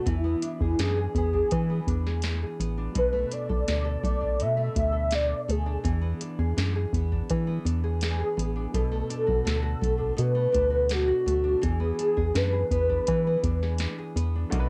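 Wistful and mellow, this bedroom-pop fragment cut from a longer indie pop piece moves at 83 BPM in a straight 4/4, with a velvety, detuned synth lead carrying the melody over fingerpicked nylon-string guitar touched with subtle chorus and vibrato, a hollow, percussive organ-like FM bass sitting up front, and a soft vintage rhythm box of deep kick, crisp snare and metallic hats, as the harmony alternates between E7 and Bm7 until a clear, woody upright piano appears at 14.5 s, the whole captured as a home recording on cassette with light reverb.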